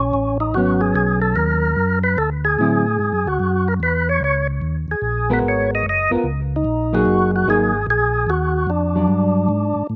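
A percussive tonewheel organ with key click, slapback echo and a slow rotary speaker carries the melody up front in this late-night, soulful swing jazz fragment, over a round, lightly overdriven tonewheel organ bass with chorus vibrato, while a dark, clean hollow-body jazz guitar with slapback echo accompanies from 0.6 seconds, drops out at 2.8 seconds and returns at 5.3 seconds, all in a dry outdoor sound moving through rich chords such as Abm11, D9 and Gb69.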